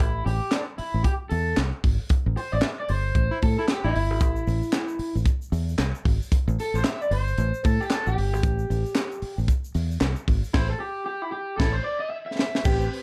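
Dark, lightly reverberant production frames a cool, funky groove in which a crunchy overdriven guitar solos from the start over fingered, foam-muted bass and a tight funk kit with high-tuned snare, handclaps and crash, with band accents at 2.1 and 10.5 seconds, a drum fill, brief clear baritone saxophone lines, a grainy egg shaker entering at 4.2 seconds, and a fat, key-clicking tonewheel organ with slow rotary speaker arriving only at 12.6 seconds as this fragment of a longer piece cuts off.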